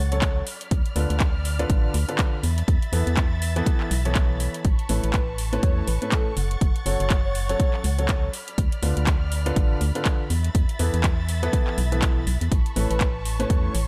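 Feel-good and euphoric, this piano house clip at 122 BPM in A major rides a swung groove on a punchy, overdriven electronic kick up front and a garage kit of handclaps and metallic hi-hats, while a hollow, organ-like FM bass, a polished grand piano riff with delay, and a lush, bowed violin section all pump with sidechain alongside an airy, detuned lead that drifts in softly from the background with chorus and delay at 5.0 and 12.9 seconds over chords moving from Dm6 through Esus4 to Aadd9 and F#m.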